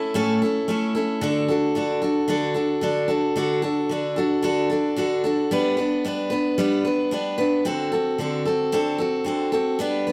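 A straight 4/4 pulse at 112 BPM carries this easygoing, down-home country fragment, cut from a longer piece and tuned to A4 = 442 Hz. A lone picked steel-string dreadnought acoustic guitar sits up front, bright and full-bodied, ranging from A2 to B4 as it moves through A, D, G and D7 across 10.1 seconds. A large, wet studio reverb with a 1.3-second decay gives the room a spacious sound.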